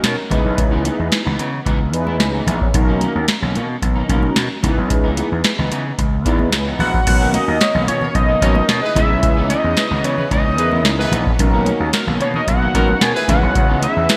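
Booming analog drum machine with gated reverb, gritty overdriven slap bass, mellow phased synth brass and very quiet high-tuned congas open this smooth, danceable early-eighties boogie funk excerpt at 111 BPM in B major, joined by a dark, slightly broken-up electric guitar riff in the background, before a fat, warbling analog lead takes the melody at 6.8 s, bright bowed strings hold sustained chords from 7.1 s, and a punchy horn section adds a second line from 7.6 s, all set in a lush hall reverb with bright 1980s digital production over alternating C#m9 and Bmaj9 chords.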